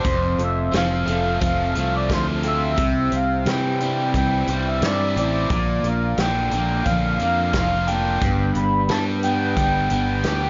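From the first beat, a reedy accordion carries the melody, dark and smooth with a slow beating and a touch of tape echo, over a folk rock and heartland rock band at 88 BPM in a straight 4/4. A jumbo steel-string acoustic guitar is picked beneath it, full-bodied with audible finger squeak, while a bright, double-tracked overdriven electric guitar plays a biting riff. A fingered electric bass sits direct and up front, and a natural country drum kit with punchy kick, medium-tuned snare and hi-hat keeps time in a studio room. The chords move from F to C, then Bb, then G, and at 8.2 seconds a soft, flute-like tonewheel organ slips in very quietly with sustained chords through a rotary speaker. Light reverb and small room ambience frame this open-road, nostalgic excerpt, which is cut from a longer piece and has a rolled-off top end.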